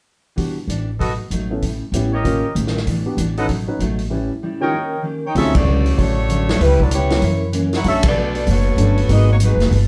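A woody, thumpy upright bass sits up front in this brassy big band swing excerpt, anchoring a brisk, swinging groove cut from a longer piece. A natural-sounding drum kit with a punchy kick, medium-tuned snare, hi-hat and ride cymbal drives the time, while a polished grand piano and a full-bodied picked jumbo acoustic guitar, complete with audible finger squeak, fill in the accompaniment. A clear trumpet section punctuates the opening half with ensemble stabs from 1.0 seconds over a cycling run of seventh chords. At 5.3 seconds a smooth saxophone section with light vibrato enters with the melody as the harmony moves to a new progression, and the full band hits accents at 5.5 and 8.0 seconds. The whole group is heard from further back in a moderately reverberant club room.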